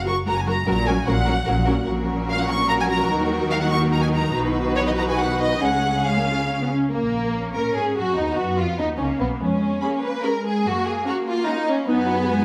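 Stormy and urgent, this quick classical-period movement for string orchestra moves in a flexible, rubato three-beat lilt, heard as a short passage cut from a longer piece. A focused first violin section carries the melody up front, its bowed vibrato tone sitting forward in the blend, while a second violin section adds a clear, intense line that sounds somewhat distant yet lush. Violas fill in the accompaniment with a smooth, even texture, and the cellos and double basses together anchor the bass, the basses reaching deep and sounding further back. All five sections play from the opening moments to the end at 12.4 seconds, with the music turning to a second section at 6.9 seconds. A moderate recital hall reverb gives the ensemble a sense of space around its rich, full string sound.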